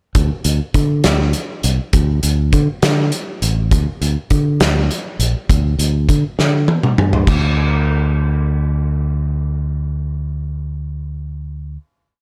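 A loose indie drum kit with a punchy kick, fat snare and dark cymbals in a pumping room opens this intricate, restless math rock and midwest emo piece in 6/8, joined a moment later by a fingered electric bass, warm and up front, driving a syncopated riff until a drum fill at 6.4 seconds hands off to a final bass note ringing under light reverb to 11.8 seconds.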